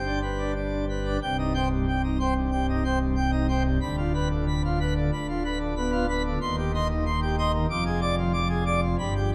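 In a vast, echoing cathedral with a long, wet reverb, a solo pipe organ on full plenum fills the space, its mixtures bright and brilliant and its romantic voicing placed up front. This dramatic, stormy excerpt from a classical organ toccata in a straight 4/4 moves from a brief opening on G into a C minor passage at 1.2 seconds, with diminished harmonies darkening the stretch that follows. The organ ranges from the deepest pedal notes up to high treble through the full 9.3 seconds.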